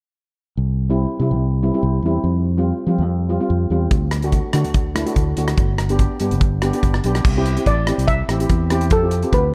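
This calypso excerpt has a dark production, with light reverb and a small-room ambience. It is festive and bouncy at 144 BPM in 4/4 and C major, with a slight swing on the sixteenths. A fingered electric bass, direct and amped and sitting up front, opens at 0.6 seconds. Soft rubber sticks on cello pans soon add a mellow, vintage, band-limited accompaniment over chords moving from C through Fsus2, D and G. An acoustic drum kit joins at 3.9 seconds with a punchy kick, hi-hat, rim click and crash cymbal. At 7.7 seconds, shortly after the harmony turns to Cadd9, a lead steel pan struck with medium rubber sticks brings in a shimmering, metallic melody before the cut.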